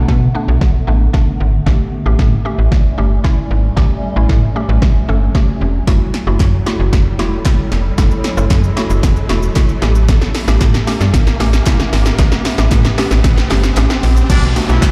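A confident, energetic dance-pop build-up opens with a woody, warbling mallet-like synth pluck, a cloudy granular pad and a snappy, metallic-edged FM bass all pumping against an overdriven, punchy analog drum machine, while a riser and downlifter hover in the background, a crisp but very quiet group handclap joins at 6.4 seconds, and a distant, roomy horn section arrives at 14.3 seconds as the Bm7, A7 and F#m7 progression comes back around to Bm7.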